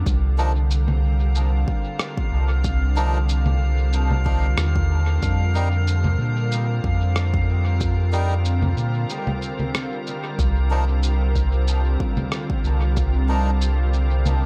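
Ambient dub at 93 BPM with a light swing, hazy and meditative, in which a round, up-front sub bass and an overdriven electronic kick sit beneath a soft organ-like pad with ensemble chorus, while muffled, pitched-down shaker, congas and rim click trail dub echo, reedy melodica stabs pass through dub echo of their own, and a glassy harmonics texture drifts from 0.6 to 10.4 seconds, the chords moving from Cm11 to Fsus4 and, after a short break at 9.1 seconds, to C9sus4 inside an echo-heavy digital ambience.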